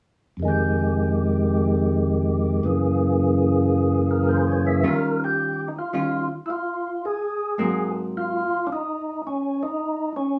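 A fat, lightly overdriven tonewheel organ with key click, chorus vibrato and a slow rotary speaker carries the melody up front in this greasy, swinging jazz excerpt, joined from 4.8 to 8.4 seconds by a dark, clean, picked hollow-body electric guitar in accompaniment, all set in a small room with a band playing live and a wet studio reverb.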